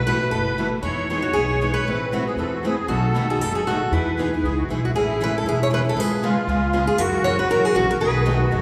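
A brisk swung pulse at 234 BPM in 4/4 drives this playful, lively slice of acoustic string swing in the jazz manouche style, cut from a longer piece and set in E major. Up front, a bright picked steel-string acoustic guitar carries the melody while a reedy musette accordion with shimmering musette tuning plays a second line in the same register. Beneath them, a pizzicato upright bass with gut strings gives a woody, thumpy low end. Two more picked steel-string guitars supply accompaniment from 0.1 s, one with a concert-style brightness and the other a boxy parlour instrument sitting in the background, where finger squeak can be heard. The harmony moves from B7sus4 through Emaj7 and Amadd9 in the first section, then shifts at 4.9 s to Amaj7, C#7/G#, F#7 and a closing B7 that points back toward the home key. A generous recital-hall reverb with a 1.8-second decay wraps the ensemble in the resonant air of a church or concert hall.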